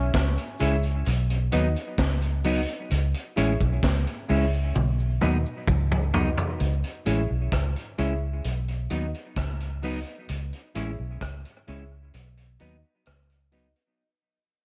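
Heavy and deep, this dub reggae cut at a straight 4/4 pulse rides a round, punchy, foam-muted electric bass and a saturated, gritty vintage drum kit up front, with hi-hat, kick, rim click, snare and toms, plus a close, dry cabasa that stops at 6.6 seconds. A clean, mellow electric guitar and a boxy, long-sustaining grand piano stabbing above it both carry tape echo over a C#m to B chord cycle, in light studio reverb. A drum fill runs from 4.8 seconds, the excerpt fades out from 6.6 seconds, and a break arrives at 12.1 seconds.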